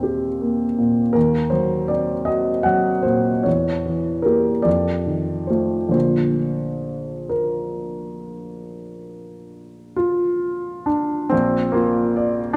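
A slow, rubato sway in 12/8, moving at roughly 42 to 54 dotted-quarter beats per minute, carries this dreamy, tender romantic nocturne for solo piano in Bb major, tuned to A4 = 443 Hz. The grand piano is clear, intimate and up front, natural in tone, with the sound of its action audible beneath the notes as it ranges from Bb1 up to G5. A wet concert hall reverb, with a 2.2 second decay, surrounds the instrument and lends the phrases a lingering glow. The harmony drifts from Cm7/Eb through Cm7b5/Eb and Edim7 to F7, settling onto Bb at 5.9 seconds. Cut from a longer piece, the passage turns toward a new section at 11.3 seconds before breaking off at 12.6 seconds.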